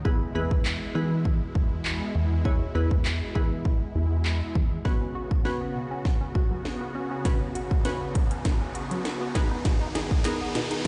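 A punchy, up-front house drum kit with cracking snare and metallic hats drives this upbeat, carefree dance-pop excerpt in B major at 100 BPM, joined by a crystalline wavetable pluck with chorus, a funky, dark analog bass that drops out at 4.8 s, and a lush detuned supersaw pad with phaser, all pumping to the sidechain, before a glassy pluck arpeggio with delay enters at 4.9 s to begin a build-up and drum fill, an electronic riser climbs in from 6.2 s, and a brief, very quiet group handclap lands near the end, everything sounding as if played on a big sound system in a bare stone room.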